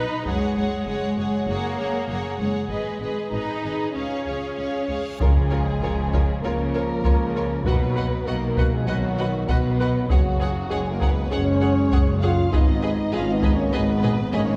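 Dark, vibrato-rich violins carry the melody over a lush second violin line, smooth violas, mellow French horn chords and even cellos and double basses, all ringing in a distant concert hall, as this adventurous, heroic cinematic score opens, with a saturated taiko ensemble striking briefly at 0.3 seconds. A huge reverse cymbal from 4.9 seconds leads into a sub drop impact at 5.2 seconds, where the heavy-stick taikos return and a background trombone section adds sustained chords. The excerpt ends on a short taiko fill.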